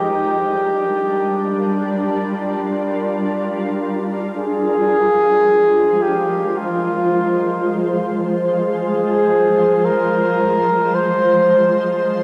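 Floating in free time, this serene, melancholic ambient fragment pairs a solo flugelhorn, played up front in a classical style with tape echo and shimmer reverb, with an ethereal, granular pad that sustains slow-attack chords beneath it. A filter sweep moves through the pad over the first 4.4 seconds on a Gm7, before the harmony settles onto Fm for the remainder. The whole piece carries the soft grain of a home cassette recording, bathed in a wet spring reverb and studio ambience.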